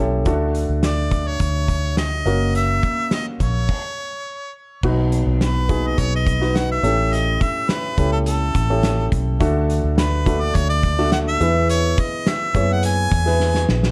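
Uplifting and warm, this piano-driven pop passage in straight 4/4 sets a woody upright piano and a round, foam-muted vintage electric bass up front, joined by a loose acoustic indie drum kit with dark cymbals and a punchy kick in a pumping studio room. A clear harmonica carries the melody from 0.9 seconds, its smooth top colored by light vibrato and scooped notes. The band breaks for a stop at 3.7 seconds before moving into a new section, and a drum fill at 13.4 seconds closes this fragment of a longer piece, all within a dark production with light reverb.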